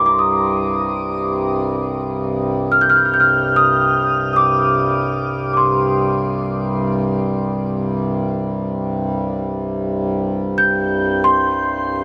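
Unmetered and free-floating, this haunting, meditative world piece, cut from a longer work, sets a worn celesta's delicate, bell-like, slightly out-of-tune melody, bathed in shimmer reverb and delay, over the reedy, breathing drone of a hand-pumped harmonium, both up front in a dreamy mix soaked in huge ambient reverb.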